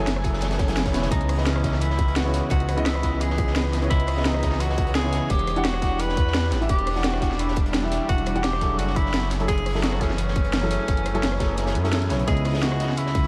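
Soaked in a huge, dreamy reverb, this lush liquid drum and bass excerpt sets a distant, roomy jazz tenor saxophone solo with light vibrato, scooped notes and tape echo, entering at 1.1 seconds, over a present grand piano with analog delay, a shimmering, detuned, sidechain-pumped pad with 12-bit grit, a smooth sawtooth synth bass up front, a tight layered electronic kick that drops out at 11.6 seconds, a drum and bass kit with a cracking snare, a gritty, dark breakbeat kit in the background, and a very quiet electronic swell near the start.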